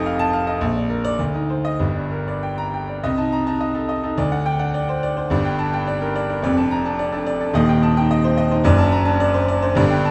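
Classical virtuoso piano study, stormy and agitated in a rubato 2/4, with a solo grand piano of brilliant, vintage tone sitting up front across a sweeping range from deep bass to high treble, bathed in a lush large-studio reverb heard from further back in the room, the brief cut from a longer piece moving into a second section at 3.0 seconds.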